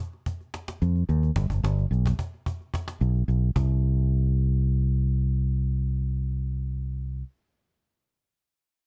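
A small room's ambience surrounds this short, defiant and funky afrobeat clip, which is cut from a longer piece and moves in a straight 4/4 feel. A close, acoustic cajon with snares provides the drum part, its snappy tone sitting back in the balance. A fingered electric bass enters at 0.8 seconds and holds the low end between G1 and F2, dark and round in timbre, direct and amped, punchy and up front. The music shifts into a new section at 3.6 seconds. The cajon stops at 3.7 seconds, and the bass carries on until 7.2 seconds.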